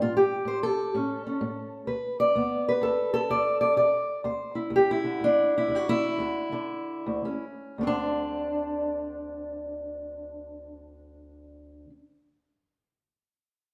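Acoustic country blues, this short excerpt cut from a longer piece carries a swaggering, soulful mood in a swung 4/4 feel. A lone fingerpicked steel-string acoustic guitar plays throughout, its dark, boxy parlour tone sitting up front and spanning D2 to D5. The chords move from A7 through Bm7/D to Dadd9, with the pace slowing down between 3.8 and 7.8 seconds. At 7.8 seconds a second section arrives on Csus2/D, after a brief C#sus2/D# chord. The sound carries a stone room reverb with a 1.2-second tail, giving the feel of a live performance in one resonant room.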